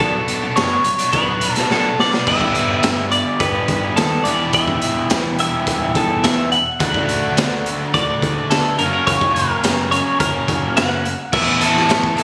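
Indie rock at 106 BPM in a bittersweet, cool mood, this short cut from a longer piece leads with a clean, warm twelve-string electric guitar melody bathed in spring reverb and tape echo, over a dark, compressed overdriven guitar riff with lush chorus, a bright, overdriven garage guitar riff in the background, and a growling, overdriven picked bass. Up front, a saturated garage drum kit with a high-tuned snare, punchy kick and pumping small-room sound plays a fill from 1.7 to 2.3 seconds as the chords move from Bm7 through G, Em, D and F# to Asus2. A jingly, very quiet vintage tambourine enters at 11.3 seconds, all heard through a phone recording made in the room.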